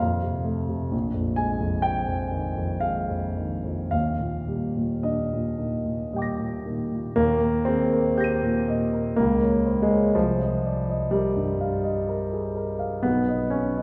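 Bathed in a long, wet concert-hall reverb and heard from further back in the room, this brief fragment of impressionist classical music features a solo concert grand piano with a warm tone and deep bass, unfolding in a serene, dreamy rubato triple metre as its lush harmonies drift from Ebmaj7 toward a hazy Cm11 in the second section near 10.2 seconds.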